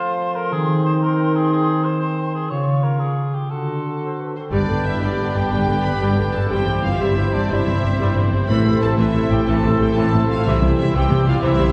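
This is a heroic adventure film score cue in 12/8, triumphant and adventurous in mood, cut from a longer piece. It opens with winds, brass and harp together: a clear, slightly vintage clarinet, a mellow cor anglais and a pure, silvery flute trace second lines. Beneath them a warm trombone section holds sustained chords, a dark, distant trumpet section punctuates with stabs, and a ringing, fingerpicked concert harp spreads arpeggios across its range. At 4.4 s a lush, rich violin section enters, and at 4.5 s the rest of the strings follow as the harmony settles into G major. The rich violins carry the melody with smooth vibrato, a second, softer violin section adds a quiet inner line, and violas accompany with expressive portamento. Mellow French horns sustain chords while cellos and double basses anchor the bass, all heard from further back on a reverberant scoring stage.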